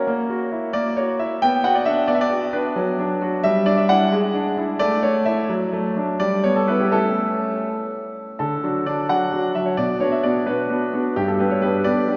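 A bright concert grand piano plays alone and up front, its brilliant treble, deep bass and long sustain spanning G2 to G5 in this dramatic, elegant classical-period sonatina excerpt in D major. The 6/8 pulse moves at roughly 80-92 dotted-quarter beats per minute with a rubato feel, opening on F#7/A# and moving through Bm, Em7/G and E7/G# before settling on A around 6.9 s. A new section begins at 8.4 s on D, passing to Bm and ending on G, all bathed in a wet church reverb with a 3.4-second decay.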